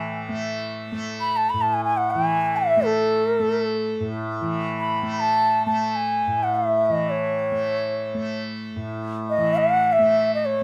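A bamboo bansuri, airy and close-miked with vibrato and tongued notes, carries a meditative, devotional Hindustani classical melody over a softly plucked, buzzing and shimmering tanpura drone, both sounding up front in a light reverb across this 10.6-second fragment of a longer piece.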